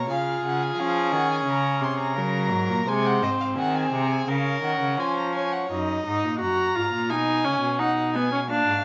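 A string quartet opens together at 0.0 s in this fragment of a baroque-style fugue in steady 4/4, its mood both driving and contemplative. The first violin carries the melody high above the group with a reedy, gut-string period tone, while the second violin sings an inner line close to the ear, its airy bow and nasal edge setting it apart until it drops out at 5.7 s. Up front, the viola fills in the accompaniment with a smooth top to its sound, and the cello anchors the bass with a rich, bowed voice. As the second violin falls away, the harmony darkens into minor chords, and the remaining trio plays on through to 8.8 s. A moderate large-studio reverb gives the ensemble a sense of space around its one-player-per-part texture.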